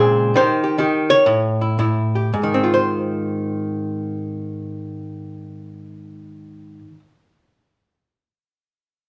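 A miked and amplified archtop guitar plays alone through this short solo jazz excerpt, its clean, dark hollow-body tone picked and compressed and placed up front. The mood is warm and relaxed, in Ab major and 4/4, with a swung eighth-note feel that loosens into rubato. The tempo moves between 106 and 146 BPM, slowing down across the opening 2.3 seconds before a second passage begins. The harmony passes through Eb6, A7 and Ab6, with the guitar ranging from Ab2 up to Db5. A light, small-room reverb gives the sound a close setting, and the recording is cut from a longer piece, ending at 7.1 seconds.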